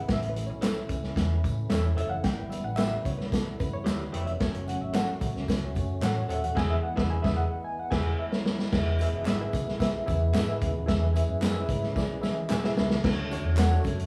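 A reedy, slightly out-of-tune electric piano with fast tremolo opens this danceable, uplifting 1960s-style soul excerpt over a fat, lightly overdriven tonewheel organ on a slow rotary speaker and a round, punchy hollow-body bass, quickly joined by an up-front vintage drum kit with dark cymbals, barely audible low-tuned congas, background tambourine and group handclaps, and compressed, slightly broken-up electric guitar stabs from 0.6 s, with a band accent arriving at 6.6 s and a piano fill at 12.0 s, set in a live studio room with moderate reverb.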